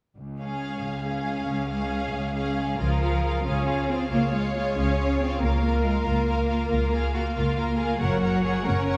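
In a straight 12/8 at 92 BPM, this soaring, adventurous cinematic passage in Db major opens at 0.2 seconds with a rich, up-front cello section holding the bass, joined at 0.4 seconds by an expressive, soft-attacked violin melody, a lush second violin line and clear violas, before a dark, woody double bass section enters at 2.8 seconds, the strings heard from further back in a reverberant scoring stage as the harmony moves from Db through Bbm/Db to Gb.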